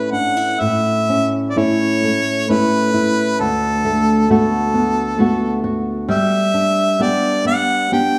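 Celtic slow air, a nostalgic and pastoral fragment from a longer piece, drifts in a rubato 3/4 at 66 BPM in A mixolydian: an up-front solo harmonica sings the melody in a classical style with a soft attack and light vibrato, while a warm, thumb-plucked acoustic flamenco guitar, also up front, accompanies through A, D6 and G chords, all set in a moderate concert hall reverb with a small room ambience.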